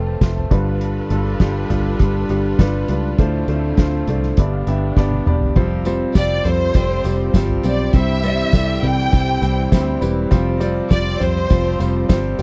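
A felt-muted upright piano with a mellow, vintage tone anchors this anthemic, uplifting piano-driven pop excerpt at 101 BPM in 4/4, joined by a round, foam-muted fingered electric bass, sustained chords from a clear string section in the background and a soft-mallet drum kit with dark cymbals, a fat snare and a punchy kick, until a felt piano fill and a drum fill lead into a new passage at 5.6 seconds, where a picked steel-string acoustic guitar riff with audible finger squeak enters, soon followed by a jingly tambourine, and a lush violin section then carries the melody with vibrato, portamento and slapback echo, all within a dry, close 1970s-style studio sound.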